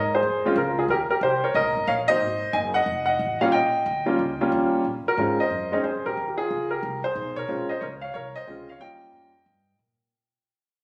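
This jazz piano trio cut swings relaxed at 182 BPM, with a warm, natural grand piano carrying the melody up front over a woody, growly pizzicato upright bass that sits well beneath it. The harmony moves from Bbm7 through Ab7, F7b9 and Eb7, then settles into alternating Bbm7 and Eb7 as the music fades out from 4.8 seconds. A moderate plate reverb adds a long tail, while the phone-in-the-room capture leaves the top end dull.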